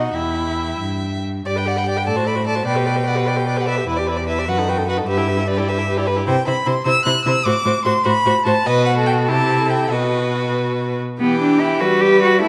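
In a rubato six-eight lilt, this restless, dramatic classical-period string quartet excerpt sets a warm first violin with vibrato on the melody above a clear, close second violin line, a rich, focused viola accompaniment and a smooth, even cello bass with light vibrato sitting up front, the four bowed players sounding together throughout in a moderate concert-hall reverb.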